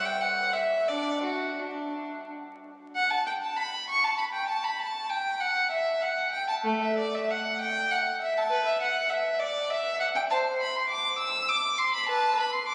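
A phone recording made in the room places this violin inside a long cathedral reverb with a five-second tail, with club reverb, vinyl crackle and compression layered onto the space. It is a short cut from a baroque-style suite movement in triple metre for unaccompanied violin, played by one player with a serene, radiant mood. The bowed line is rich and smooth, with vibrato and an even tone that sits up front while still feeling distant in the echoing hall. Phrasing breathes freely in rubato, ranging from A3 up to E6. A brief opening idea gives way to a new passage at 3.0 s, which carries on until the excerpt ends at 12.7 s.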